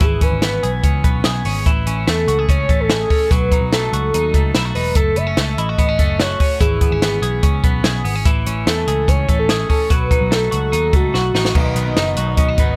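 Wistful and restless, this jangly indie pop excerpt sets a velvety, chorused synth lead melody over bright, clean twelve-string electric guitar arpeggios, a round, foam-muted picked bass and a dry, up-front cocktail drum kit with dark cymbals and a punchy kick, before a drum fill at 11.1 seconds leads into a boxy, shimmering fingerpicked twelve-string acoustic guitar entering at 11.5 seconds as the harmony arrives on B.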